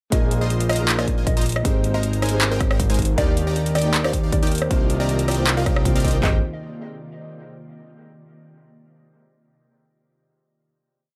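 Playful and lush, this short future bass piece runs as a single half-time drop before settling on a final chord at 6.2 seconds. Two drum kits drive it: a punchy, up-front big-room kit with a half-time kick, floor toms and claps, and a tape-tinged dubstep kit adding metallic closed hats with rolls, rim clicks and more claps, both set in a studio ambience. Beneath them a fat, nasal, saturated analog bass holds sustained roots, while a detuned supersaw stab plays dotted-rhythm chords in a spread voicing with a filter sweep, both pumping against the kick. In the background a soft felt-muted upright piano holds chords with syncopated pushes, and a woody, round mallet-like pluck repeats a riff melody through chorus, phaser and dub echo. An ethereal, airy pad enters at 1.3 seconds with slow-blooming sustained chords, and a very quiet fingerpicked Celtic harp joins at 3.2 seconds with a ringing six-step arpeggio loop that drifts against the bar, over a progression moving from Bb7sus4 through Abmaj7, Ebmaj7 and Cm11 before resolving on Abmaj7.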